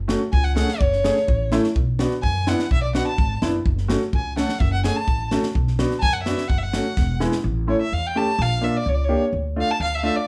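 Soulful and festive, this klezmer excerpt moves at 127 BPM in a straight 2/4, set in F# minor and tuned slightly above standard pitch. A single bowed violin carries the melody up front with a biting, vibrato-laden tone and a smooth top end, its sound bathed in plate reverb. A brilliant, woody upright piano supplies polished accompaniment with long sustain, while a pizzicato upright bass with steel strings anchors the low end. A crisp fusion drum kit with a high-tuned snare and punchy kick adds an airy, polished drive, closing its part with a fill that ends at 7.4 seconds. From there the harmony leaves its alternation between F#m and Bm for a turn through A, Bb and Dm, while violin, piano and bass carry on in a moderate studio room heard from a little further back.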